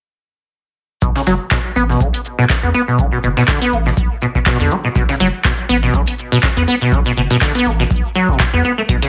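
A swung 4/4 groove at 122 BPM drives this raw, hypnotic acid house excerpt in B minor. From 1.0 s an overdriven deep electronic kick, re-recorded in a small room, and a gritty, high-passed sampler-style kit of hi-hat, shaker and medium-tuned snare carry the rhythm, joined at 1.5 s by a tape-warm analog drum machine adding handclaps and hi-hat from a large room. Beneath them sits a thick, saturated sine sub bass with sidechain pumping, while an up-front, squelchy sawtooth acid riff with a resonant filter sweep runs through tube saturation, ensemble chorus, sidechain pumping and tape echo. The mix is set in a short 0.6 s studio reverb with a heavily compressed, radio-like sound, and it runs to 9.1 s.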